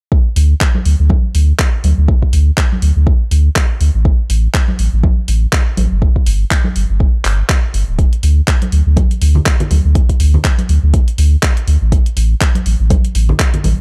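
A round, sustained sine sub bass sits up front in this warm, moody deep house excerpt at 122 BPM, spanning D1 to D2 with a fast attack and a mellow tone. A deep, overdriven, layered electronic kick punches from 0.1 seconds and is joined at 0.4 seconds by an overdriven kit of handclaps and hi-hat, both re-recorded in a small room, while ringing acoustic congas enter close and dry at 0.7 seconds with sidechain pumping. The 4/4 groove swings its sixteenths at 57%, and the mix carries little reverb.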